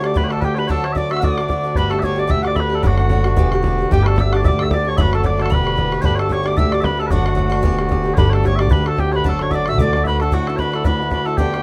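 Cheerful and bright, this short cut from a longer Celtic reel has a lightly swung feel, with mellow, sweet small bagpipes carrying the melody up front and a pure, wooden whistle adding a tongued second line with a touch of chiff above it. Picked acoustic guitar with fresh strings, a boxy tone and the odd finger squeak supplies swing-style accompaniment, while an open, boomy bodhran keeps time. A dark, woody pizzicato upright bass joins at 1.8 seconds and drops out at 10.3 seconds, all set in light reverb.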